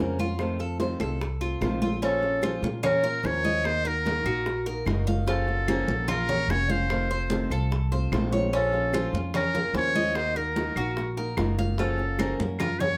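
A moderate studio ambience frames this danceable, nostalgic latin excerpt in the Cuban son and guajira style, moving at 148 BPM in Bb harmonic minor through Bbm, Ebm, Gbmaj7 and F7. A growly, thumpy pizzicato upright bass sits up front beside the metallic double strings of the picked Cuban tres arpeggios and a fingerpicked flamenco guitar with audible finger squeak. Ringing, hard-handed congas join in, while tight high-tuned bongos and dry, woody claves sit in the background. At 2.0 seconds a buzzy, thin trumpet with a metal mute takes the jazz-style solo up front, with light vibrato and scooped notes.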